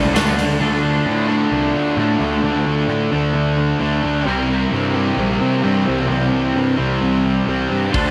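Melancholic and hazy, this short cut from a longer shoegaze and dream pop rock piece at 131 BPM in D minor stacks a bright, double-tracked overdriven guitar riff up front over a biting guitar riff with reverse reverb and a dark, thick fuzz guitar riff with subtle chorus in the background, the three guitars grainy with cassette tape and moving from Dm7 through Dm to C7 above an up-front fuzz picked electric bass, while a very quiet, twangy lo-fi guitar through a small old amp plays arpeggios, a jingly tambourine rattles, and a big acoustic rock kit with a punchy kick, medium-tuned snare and hi-hat sounds only at the opening around 0.2 seconds and again near 7.9 seconds, captured at home on cassette in a small room.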